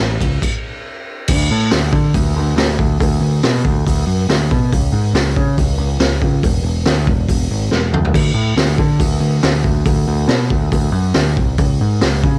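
A growling, overdriven picked electric bass anchors this rowdy, swaggering garage rock excerpt, sitting up front and ranging from its lowest depths into the low middle. It drives a straight 140 BPM in 4/4, joined almost at once by a raw acoustic drum kit of kick, snare, hi-hat, toms, crash and ride. The drums sound saturated and gritty, with a boomy kick, a medium-tuned snare, a mid-forward character and a rolled-off top, as if captured in a small room and pressed onto cassette tape. A brief stop punctuates the opening before the main groove takes hold at 1.3 seconds, and a short drum fill breaks in at 7.7 seconds. The dry, home-recorded cassette sound keeps the performance close and scrappy, and the passage is cut from a longer piece.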